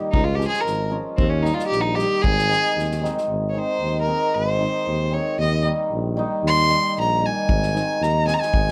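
A shimmering, ringing hammered dulcimer sounds first, setting an exuberant Balkan wedding-band groove in 2/4 at 114 BPM in Ab major. At once a bowed violin with vibrato takes the melody, smooth and up front, while a mellow tuba with a soft attack carries the bass in a classical style, and a natural-sounding drum kit adds a punchy kick and a medium-tuned snare from a small room. The harmony moves from Db to Eb and settles on Ab. At 3.3 seconds the violin launches into a virtuosic solo, and the drums drop out just before it, leaving dulcimer, tuba and violin, until the kit returns at 7.5 seconds. The close, detailed recording carries a light reverb, and this brief passage is cut from a longer piece.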